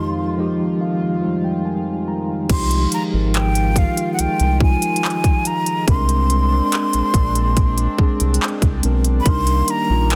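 A breathy, hollow jazz flute carries the melody high above this slow contemporary R&B excerpt at 71 BPM, its vibrato and soft attack trailed by a digital delay that deepens the late-night, longing mood. For the first 2.5 seconds a mellow tine electric piano plays a fill over a shimmering, retro pulse-width pad, with the harmony resting on Fm9 before moving later to Bb9 and Ebmaj7. At 2.5 seconds a trap drum kit arrives up front with a hard-clipped kick, crisp hi-hats, handclaps and a crash cymbal, joined by a round analog bass that sits deep and dark with a fast attack and an evolving, ring-modulated tone. The pad's chorus and slow attack soften the background beneath the clean electric piano. The dense, heavily limited master and digital ambience give the mix a polished, modern finish.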